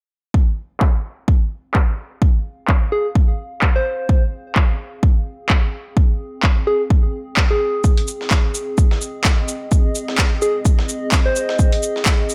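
A dry, close-sounding mix opens this gritty, swaggering bass house excerpt, set at 128 BPM in 4/4 with a 57% swing on the sixteenths and sitting on F minor throughout. A punchy, overdriven electronic kick leads from 0.3 seconds, up front with a touch of small-room reverb and a filter sweep running across it, and layered, overdriven handclaps join just after, their snare filtered darker. A warbling, nostalgic pad fades in beneath, lo-fi and detuned with a sub octave, chorus and sidechain pumping that makes it breathe against the beat. A round, gentle FM lead with a keys-like fast attack and decaying tail carries the melody between Ab4 and C5, treated with chorus and delay. At 7.8 seconds a dusty, sampler-style soul kit adds compressed hi-hat, shaker and a medium-tuned snare, thinned by high-pass filtering and sitting low in the mix.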